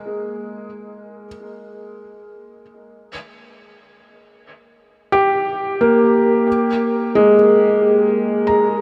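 A straight 4/4 pulse at a slow 67 BPM carries this weightless ambient fragment, a short 8.8-second cut from a longer piece, tuned slightly sharp to A4 = 441 Hz. A lone felt-muted upright piano, mellow and intimate with thin felt and audible action noise, sits up front and ranges from Ab3 to Bb5, touched by analog delay. It moves from an open, chordless start to Gm/Bb at 2.9 seconds and Absus2 at 6.5 seconds, all soaked in a huge, dreamy reverb that lingers for 7.8 seconds.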